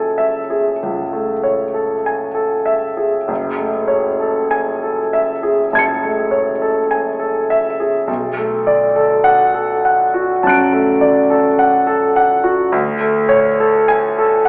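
A concert grand piano carries this mysterious, wistful impressionist solo, its intimate tone, deep bass and audible action noise sitting up front as it moves with unhurried rubato from F#m9 to Bm7 by 8.1 seconds. The playing spans from the deep bass register to high, glinting notes, bathed in a wet recital hall reverb that places the listener further back in the room, with a narrow telephone-like colouring. The 14.5-second passage is cut from a longer piece and ends on a hovering Dmaj7 colour at 12.7 seconds.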